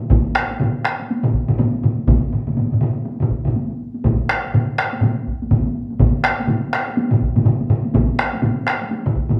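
A taiko ensemble struck with heavy sticks opens the piece, and within a moment two more ensemble parts and a set of solo taiko drums join in, struck with hard or heavy sticks, and the full group drives on together through about 9.4 seconds of this ceremonial, powerful Japanese traditional music. The tempo sits at 123 BPM in 4/4 with a swung sixteenth-note feel. Everything sounds like one band playing live in a large studio with a wet reverb: one heavy-stick ensemble is close and dry, the solo drums carry a distant, roomy ring while still sitting up front, and the other groups add a live-room and small-room presence.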